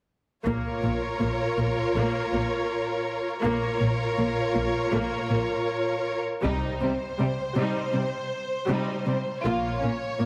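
Cinematic epic orchestral film score with a heroic, dramatic mood, where rich, expressive bowed violins and focused, close violas play over a lush cello section and a woody double bass section, with dry taiko hits with heavy sticks sitting in the background, until at 6.4 seconds a build-up begins and an up-front violin melody with a smooth top enters, all bathed in concert hall reverb and heavily compressed like a radio broadcast.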